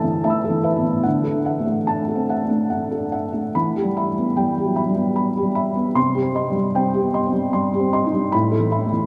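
A felt-muted upright piano opens alone on an Asus2 chord, its tone soft and dark with the thick, padded quality of heavy felt, sitting up front and close. This is neoclassical minimalist piano in E minor, melancholic and intimate, moving at 75 BPM in 3/4 with a loose, rubato feel. The harmony drifts from Asus2 to Dadd9 at 1.1 seconds, settles on Em, then darkens to Cm at 6.0 seconds before returning to Asus2. The piano spans from A2 up to E6, its mellow, natural voice carried into a vast, echoing cathedral reverb with a long 5.4-second decay. This brief passage of about 9 seconds is cut from a longer piece.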